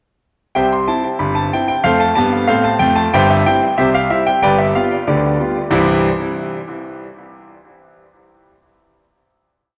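Ragtime piano in C major at 93 BPM in a straight 2/4, jaunty and lively, with a bright concert grand playing solo from 0.6 to 6.1 seconds, up front with a tune over chords and a stride bass reaching deep into the low register. The brilliant tone passes through an analog delay and sits in a lush hall reverb with a touch of small-room ambience, giving a dreamy, soaked sound whose top end is rolled off. The short piece moves through C, F, C/G and G7 before settling on a final C chord at 5.7 seconds.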